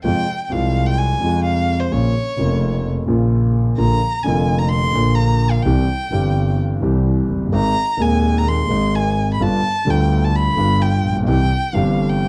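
This tango fragment, cut from a longer piece, moves at 128 BPM in 4/4 with a rubato feel and a playful yet nostalgic mood, tuned to A4 = 438 Hz. A bowed violin sits close and up front, carrying a solo from 0.0 to 12.3 seconds with a soft attack, expressive vibrato and gliding portamento in its upper register. Beneath it, a dark, mellow baby grand piano supplies accompaniment that is also up front, its vintage tone ringing with long sustain across a broad span from the low bass to the middle register. A bowed double bass holds down the bottom with a smooth, even sound touched by vibrato. The harmony moves from Fm through Bbm, Bb, C, Ab and G7 before settling on C, framed by light reverb and a dark, warm production.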